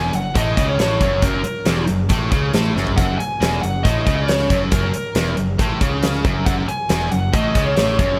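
Anthemic and energetic, this short hard rock excerpt charges ahead in a straight, driving 4/4. A dark, bluesy lead guitar carries the melody high above the band, its distorted, picked tone cutting through from the opening F#5 chord. Beneath it, two picked electric guitars play the low riff: one bright and overdriven sitting in the background, the other a high-gain distorted layer with extra bite. A growling electric bass, direct and amped with overdrive, adds a warm, gritty floor to the riff. The huge arena drum kit sits up front with a fat snare, punchy kick, hi-hat and toms, and a drum fill at 2.8 seconds. The overall sound is dry and close, with little reverb around the instruments.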